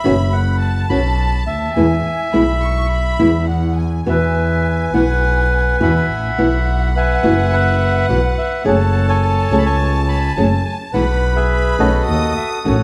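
Nostalgic and playful, this rubato tango excerpt sets a reedy, up-front bandoneon melody over a fingerpicked flamenco guitar and an intense, bowed double bass with light vibrato, all four parts sounding together from 0.0 to 12.8 seconds. Above them, a smooth, close violin section carries a second line with even bowing and vibrato, while the bandoneon keeps a boxy small-room character. Light reverb and a dark production frame the harmony as it drifts from B5 and E through suspended and added-ninth chords toward a closing D#m7b5 at 12.1 seconds.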